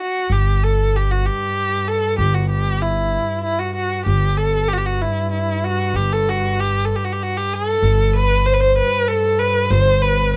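A bowed kamancheh opens this passionate, stately Persian modal piece in triple metre, its warm voice placed up front and shaped by expressive vibrato and portamento. At 0.3 seconds a pizzicato upright bass enters on a single low note, its steel strings giving a woody pluck. At the same moment a bowed double bass sustains an earthy drone farther back, colored by light vibrato. At 8.1 seconds a fretless oud adds a second line in the background, its double strings sounding bright under the plectrum. The close, detailed recording carries light reverb, and the passage is cut from a longer piece.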